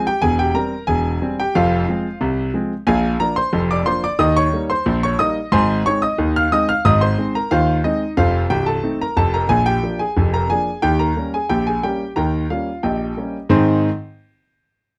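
Cheerful and jaunty, this short ragtime excerpt in a straight 2/4 features a solo grand piano with a clear, worn, natural tone and short sustain, placed up front and heard close and detailed in light reverb as it ranges from deep bass to bright treble through a circle of dominant-seventh chords that settles home just as a new section begins at 13.5 seconds.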